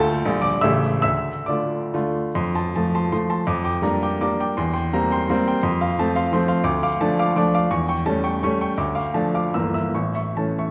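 Dotted rhythms lift this wistful, nostalgic romantic classical dance in 3/4, cut from a longer piece, where a solo baby grand piano with a clear, intimate tone, audible action noise and short sustain sits up front in a wet recital hall reverb heard from further back in the room, its rubato tempo flexing between 127 and 185 BPM as it spans G1 to E6 and turns from F major to D minor at 6.7 s.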